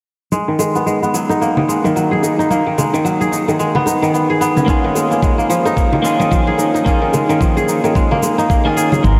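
A dreamy mix soaked in a huge ambient reverb opens this short cut from a longer piece of organic downtempo, earthy in mood and set at 110 BPM in 4/4 with a swung sixteenth feel in G# dorian. Up front from 0.3 seconds, a fingerpicked kora rings out in crisp arpeggios, its acoustic tone roughened by vintage 12-bit sampler grit, a low-pass filter and diffuse ambient delay, with a filter sweep running across it over a G#m7 chord. Beneath it, an overdriven electronic cabasa plays while bright, band-limited congas and bongos sit in the background. At 4.7 seconds the harmony moves to A#m7 as a gritty, thumpy electronic kick arrives up front alongside a clean, twangy electric guitar accompaniment, picked and compressed, with subtle chorus, sidechain pumping and its own ambient delay. In the final moments, at 9.0 seconds, a deep, round analog bass lands on a sustained low G#, dark and up front.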